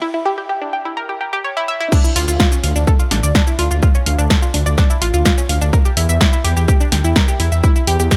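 Straight 4/4 rhythm drives this dark melodic techno, cut from a longer piece, where a round, nasal analog pluck arpeggio with chorus, phaser, dub echo and sidechain pumping rides a filter-swept build-up alone until 1.9 s, when the drop brings in an up-front, punchy, overdriven kick, a small-room deep house kit of snare, hi-hat, shaker and crash, and from 2.2 s a deep, rumbling detuned saw bass that pumps beneath the shifting Dm and Em chords.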